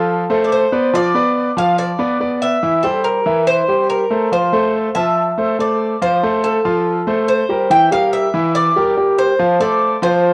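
A Cuban tres and a bright concert grand piano open together, the tres carrying the melody with its metallic, picked double strings while the piano spills polished arpeggios over a deep bass, both up front and colored by cassette tape. This danceable, warm Latin fragment, cut from a longer piece, moves through chords such as Dm7, C, Fadd9 and Em7b5 before settling on F near 9.4 seconds. A moderate spring reverb wraps the pair in a homespun, cassette-recorded sound.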